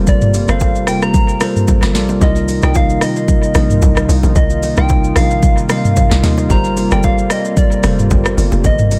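An echo-heavy digital ambience surrounds this short, late-night amapiano passage, cut from a longer piece, moving at 112 BPM in 4/4 with a light 16th-note swing in C dorian, tuned slightly below standard pitch. Up front, an electronic afro-pop drum kit sets a deep kick, sharp snare, metallic hats, rim clicks, shaker and toms with a tape-warm edge and a touch of analog delay. Underneath, a tight log drum bass hits punchy and percussive, its FM tone and noise layer snapping in fast and decaying quickly. A bell-like tine electric piano plays bright, clean accompaniment over the chords Gm11, Cm7 and back to Gm11, while a smooth, detuned sawtooth pad sits in the background with chorus and sidechain pumping. A soft struck synth lead carries the soulful melody in a round, gentle, keys-like voice that warbles with vintage chorus, tremolo and delay. Very quiet congas and bongos add close, dry, hard-handed accents.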